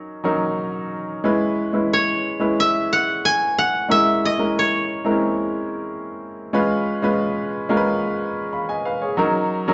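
A straight 4/4 pulse at 91 BPM carries this silky, smooth soul fragment, tuned to A4 = 439 Hz, where a clear, present grand piano plays up front through the whole 9.7 seconds over D#m7, C#m7, A#m7b5 and C#7 chords, while a dry, woody koto played with fingerpicks carries the melody up front from 1.9 to 6.2 seconds, all captured as a live band in one room with a moderate large-studio reverb and a top end that stops at 7.8 kHz.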